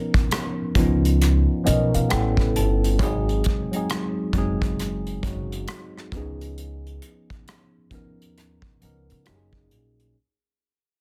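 A mellow tine electric piano opens the excerpt at 0.0 s, its worn, slightly out-of-tune voice sitting up front with a phaser coloring its chords, and it slips in a short fill between 1.2 and 3.0 s. This is a relaxed, warm neo-soul and R&B groove at 67 BPM in 4/4, with sixteenths swung and tuning set to A4 = 438 Hz. An unplugged acoustic drum kit played with bundle sticks joins almost at once, up front in a studio room, with hi-hat, a punchy kick and rim clicks, and its snare carries soft clipping. A pizzicato upright bass with steel strings enters at 0.8 s, sounding woody, growly and thumpy in its low register. The harmony moves through Bmaj9#11, A9, G#7 and C#9 before settling on F#69, all under a fade-out that spans the whole passage. Light reverb surrounds a dense, heavily limited modern master.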